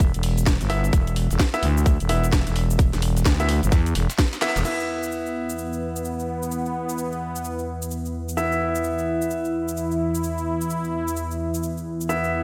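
Bass house with a bouncy, gritty mood and a swung sixteenth-note feel, heard in an excerpt lifted from a longer piece. A growling, thick FM bass sits up front with tube saturation and sidechain pumping, a filter sweep running across it until it drops out at 4.6 seconds alongside a very quiet, tape-warm breakbeat kit, while a tight electronic kick falls away just before, at 4.3 seconds. A garage kit of cracking snare, handclaps, shaker, crash and warm hats carries on through the whole clip, and a drum fill and band accent mark 4.4 seconds. A brilliant grand piano plays stabs from 0.7 seconds, intimate with audible action noise, pumping and treated with delay. At 4.7 seconds an evolving, airy sawtooth pad enters with sustained chords, detuned and chorused, its filter swelling. The mix is dreamy and soaked in a lush digital hall reverb.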